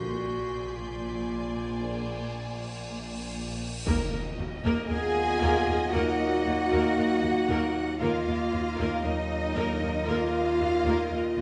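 Ominous and eerie, this slow cinematic suspense cue, cut from a longer piece, opens on a tense dominant chord before settling into a dark minor harmony at 3.9 s. A rich violin section carries the melody from the background, shadowed by a second, focused violin line and a mellow solo clarinet, while a high violin texture shimmers above until 3.3 s. Violas with soft attacks and portamento fill the middle, mellow French horns and very quiet, distant trombones hold sustained chords, and woody cellos and smooth double basses anchor the bass. Beneath them an overtone-sweeping drone, resonant with chorus and its own reverb, hums low, as close, dry timpani struck with hard mallets sound only at the opening. A huge, bright cymbal swell builds from 2.2 s into an impact that rings until 8.0 s, all set in the wet reverb of a scoring stage.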